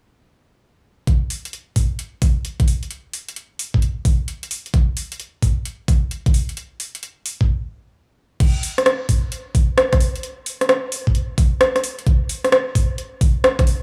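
Soulful and sunny, this UK garage excerpt swings its 16ths in 4/4, with a knocking, overdriven electronic kick and an up-front garage kit of metallic hats, crash cymbal and rim clicks, both gritty and dry in a small room, playing from 1.1 seconds before a stop at 7.5 seconds and a fresh section from 8.4 seconds.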